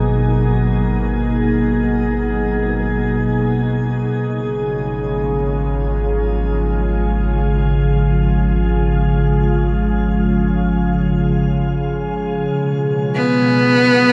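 Heard through the soft grain of cassette tape, this short ambient passage, cut from a longer piece, unfolds in free time inside a vast, echoing space whose cathedral reverb trails on for 6.3 seconds. A glassy FM pad, ethereal and mellow and placed up front, holds sustained chords in G# dorian across the whole recording, its slow attack and long release thickened by ensemble chorus, built-in reverb and a shimmer reverb. Beneath it, a round sine sub bass sits on a deep G#1 until 12.5 seconds, as the harmony moves from G#m9 to C#/G# and back to G#m9. At 13.1 seconds a single bowed cello enters up front on B3, its tone biting and intense with a light vibrato, cutting through the haze for the final moment. The mood is spacious and reflective, with the tuning set slightly high at A4 = 443 Hz.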